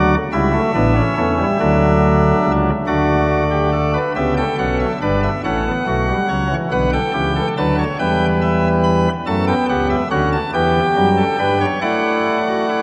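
Moving in a straight, unhurried lilt of six beats to the bar, this baroque-style four-part fugue for solo pipe organ unfolds with a serious, contemplative air, cut from a longer piece. The organ speaks through a nasal cornet stop with a distinct chiff, placed up front and ranging from deep bass up to bright upper notes. Its voice blooms into a vast, echoing cathedral reverb, while the harmony drifts through minor-tinged chords before settling toward a suspended close at 11.8 seconds.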